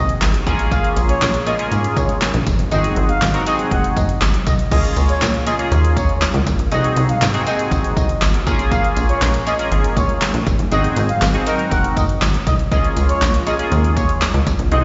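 A punchy, funky analog bass with a plucky filtered bite sits up front in this carefree, euphoric dance-pop clip, joined by an overdriven deep house drum kit with a fat snare, handclaps and crash cymbal, and a jingly tambourine in the background. A smooth, dark synth lead with vibrato and tape echo carries the melody over a glossy, warbling chorused polysynth and a mellow detuned pad, all pumping with sidechain against the kick as the chords cycle through Bbm7, Ab7 and Db6. The sound is that of a live gig heard through a venue's PA, with recital hall reverb and a dull, muffled top end.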